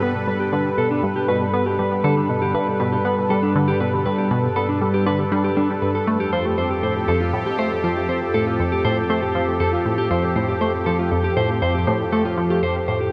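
Ambient, sequencer-driven space music in F lydian at 119 BPM, expansive and cosmic in mood, drifting from Gadd9 to Fadd9 at 6.1 seconds across this 13.1-second fragment of a longer piece. A tight, nasal sequenced synth drives a riff in the low register with chorus and analog delay, while a mellow, dark electric guitar plays fingered arpeggios up front through a low-pass filter and analog delay, a filter sweep running across its clean tone throughout. Alongside them an airy, resonant pad of detuned sawtooth and a noise layer sustains chords with slow attack and long release, all bathed in a huge, wet reverb.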